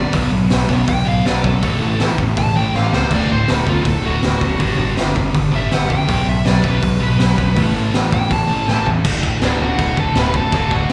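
A driving, straight 4/4 pulse at 162 BPM powers this upbeat, rebellious punk rock clip in D major, cut from a longer piece and heard as a live gig through the venue's PA with club reverb. The raw garage drum kit sits up front, its high-tuned snare, punchy kick, hi-hat, crash and toms sounding gritty and saturated with a rolled-off top, and it drives short fills at 2.7 and 8.7 seconds. A dark, smooth lead guitar carries the melody as a solo until 9.0 seconds, overdriven and touched with slapback echo. Beneath it, a growling picked electric bass with a bright, amped overdrive anchors the low end, while three riff guitars fill out the mix: a very quiet, double-tracked fuzz guitar with a compressed bite, a dark sludgy distorted guitar kept far down, and a second sludgy guitar with overdrive and slapback echo that sits in the background and drops out at 9.0 seconds. The chords cycle through Bm, A, D and G before landing on D as a brief closing section begins.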